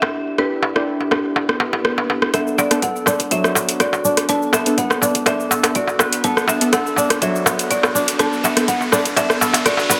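Driving and earthy, this afro house excerpt at 123 BPM in B minor swings lightly as a bright, woody marimba melody and round, detuned analog key stabs with chorus, sidechain pumping and a filter sweep ride over an up-front afro-pop kit of metallic hats, rim click and shaker plus crisp darbuka. A background swell and riser enters at 1.5 seconds, before a mellow, ringing fingerpicked kora and a punchy background electronic kick arrive at 2.3 seconds for a build-up over Bm7, all set in a lush hall reverb with dub echo on the marimba, keys and kora.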